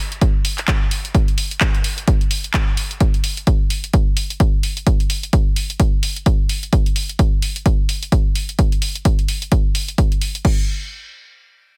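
Set in a digital ambience, this aggressive, swaggering bass house fragment at 129 BPM in 4/4 swings its sixteenths at 58%, driven by a punchy, layered, tape-warm electronic kick drum placed up front from 0.2 s and a produced, tape-warm house drum kit of crash cymbal, handclaps and hi-hat that sits further back from 0.1 s, both stopping at 10.6 s.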